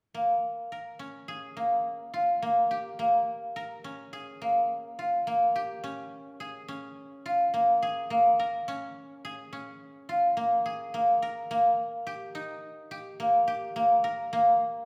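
Hypnotic and restless, this contemporary chamber piece is cut from a longer work and moves at 106 BPM in an uneven 5/4 with a straight feel, centered in Bb dorian. A solo guzheng carries everything from 0.1 to 14.9 seconds, staying within the octave from Bb3 to Bb4. Played with fingerpicks, the instrument sounds bright and silvery, its ringing notes placed up front. The harmony rests on Bbm7 before shifting to Eb/Bb at 11.5 seconds, and a new section begins at 5.8 seconds. A wet recital hall reverb surrounds the playing, and the room is heard from further back, giving the solo a sense of space.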